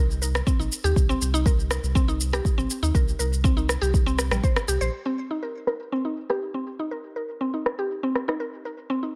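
This dry afro house passage, cut from a longer piece, has a warm, hypnotic mood in a straight four-beat groove. Up front, a woody, mallet-like FM synth pluck spins arpeggios throughout, its fast attack and short decay touched with a noise layer, chorus, digital delay and sidechain pumping that give it a bright, bouncing edge. Beneath it, a round, dark analog bass blending sawtooth and sine tones holds sustained low notes with the same pumping, then drops out at 4.9 seconds as the harmony moves from Eb5 to Cm7. A deep, produced electronic kick sits prominently from 0.5 to 4.5 seconds. An electronic shaker and rim click, each softened by a low-pass filter, tick along for the whole stretch and carry a filter sweep through the closing half.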